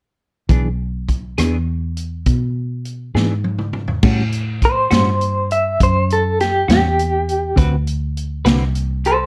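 A bright, slightly broken-up lead guitar through a small old amp carries the melody from 4.7 seconds, its picked, lo-fi, compressed tone shimmering with tremolo and sitting up front in the mix. This is a gritty, soulful slow blues at 68 BPM in a straight 12/8, cut from a longer piece. Beneath it, a clean, fingered electric guitar with harmonic tremolo plays the accompaniment, while a dark, round, foam-muted electric bass holds the low end and a vintage acoustic drum kit with a punchy kick, medium-tuned snare and rolled-off top fills out the groove with hi-hat, rim clicks, toms and crash. The harmony moves from E7 to A6 at 4.0 seconds and on to D6, with a drum fill leading into the second section just before the lead guitar arrives. Light reverb and a natural studio-room sound give the whole performance an intimate, old-fashioned character.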